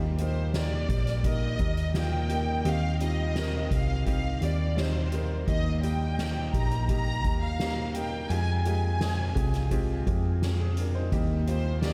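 A round, dark hollow-body electric bass sits up front in this hopeful piano-driven pop excerpt, beneath a woody, slightly detuned upright piano, a lush, distant violin section carrying the melody with expressive vibrato, and a soft-mallet drum kit with a fat snare and boomy kick, in a dreamy mix soaked in cathedral reverb as the chords move from Eb through Cm to Fmadd9.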